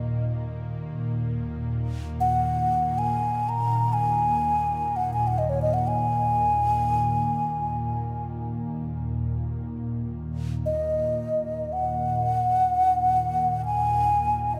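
Haunting and meditative, this free-time world meditation excerpt in Eb minor pentatonic opens on an ethereal, airy pad drone low in the register, its detuned unison voices softened by ensemble chorus and built-in reverb. At 2.2 seconds a breathy low xiao enters with the melody, its bamboo tone close and up front, with vibrato, a soft attack and a diffuse ambient delay. Both parts sit in a wet church reverb with a long 3.5-second decay.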